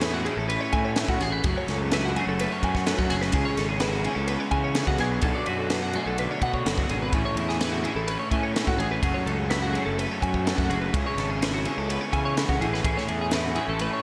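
Math rock and midwest emo at 126 BPM in A major, playful and wistful, with all five parts playing through this brief 14-second cut from a longer piece, as jazzy chords like Amaj9, F#m9 and Bm9 cycle beneath. Two bright, twangy twelve-string electric guitars with analog chorus interlock, one picking the accompaniment and the other picking arpeggios in the background, while a dark, lo-fi, double-tracked garage guitar drives an overdriven riff and a growly fuzz bass punches underneath. A crisp fusion kit with a punchy kick, high-tuned snare, dark ride cymbal and gated reverb sits up front in a lush hall, giving the whole track a polished, 1980s-style digital sheen.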